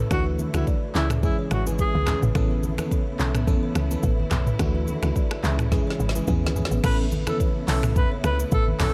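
An up-front, electronic afro-pop drum kit drives this short, sunny and romantic afrobeats excerpt with a deep kick, a woody snare and metallic hats, plus rim clicks, finger snaps, handclaps, shaker, crash and toms, all set over a lightly swung groove. Underneath, a punchy FM log drum bass with a fast, decaying attack anchors the low end, while low-tuned, thick-skinned congas sit in the background from 0.4 seconds. A glassy, bell-like FM electric piano with chorus supplies the accompaniment, and a buzzing, hollow-boxed kalimba with delay rings out a riff behind it. A lush, bowed studio string section holds sustained chords with vibrato and portamento, moving through Dadd9, C#m, Aadd9 and E6. A breathy, whispered alto saxophone with delay sings an intimate pop-style melody at the start, drops out, then returns at 6.9 seconds after a drum fill at 5.7 seconds, all wrapped in a dark production with a small-room reverb.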